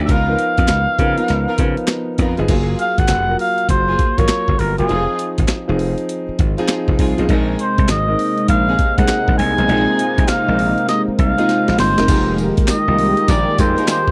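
A confident, bouncy R&B groove in the new jack swing style at 100 BPM, this cut from a longer piece swings its 16ths over a Db13 to Gbmaj9, Fm7 and Bb9sus4 progression before settling on Fm11. A veiled, cup-muted trumpet carries the jazz-style melody up front with vibrato and scooped notes, over a gritty, compressed sampler-style breakbeat kit with thumpy kick, handclaps and tambourine, a bright, punchy slap bass, and an intimate vintage grand piano with audible action noise. Woody, bowed string stabs with tape echo sit in the background, an airy, detuned sawtooth pad with chorus enters at 7.3 s, and a drum fill at 11.5 s leads into the closing chord, all in a dry, close 1970s-style studio sound with light reverb.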